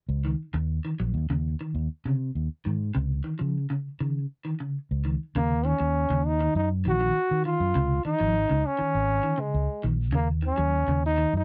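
A round, amped fingered electric bass opens this defiant, hypnotic afrobeat piece in Eb dorian at 100 BPM, and a slightly broken-up electric guitar follows with dark, picked arpeggios colored by tremolo. At 5.4 seconds a clear, vintage trombone steps up front with a pop-style solo melody as the harmony settles on Ebm7 and then moves to Db5. This section, cut from a longer piece, has a dry, close 1970s-style studio sound.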